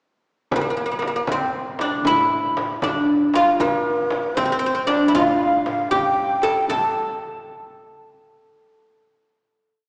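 A deep, woody fretless oud sits up front in this short, complete Persian modal piece in a straight 6/8. Its double strings are plucked with a plectrum as it carries an ornamented modal melody from 0.6 seconds, with a hypnotic, longing mood. A breathy low ney joins at 3.6 seconds, tracing the same line with its own ornaments, a soft attack and gentle vibrato in its end-blown reed-cane tone. Underneath, a growly pizzicato upright bass stays in the background, sounding on the low drum strokes. A small, bright frame drum and a tight, very quiet tombak both play low and high stroke patterns in a live room. The ensemble rings in a wet concert-hall reverb with a small-speaker character before settling onto a final note at 6.7 seconds.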